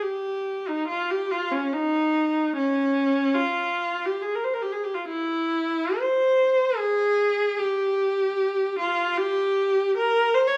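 Rubato phrasing in 3/4 drifts between 62 and 77 BPM in this yearning, meditative classical excerpt for unaccompanied viola, tuned to A4 = 439 Hz and cut from a longer piece. A single bowed viola plays alone for the full 10.6 seconds, its warm, smooth, even tone carrying vibrato across a range from Db4 to Db5. The viola sits up front yet has a distant quality, set in a moderate recital hall reverb with a 1.7-second decay.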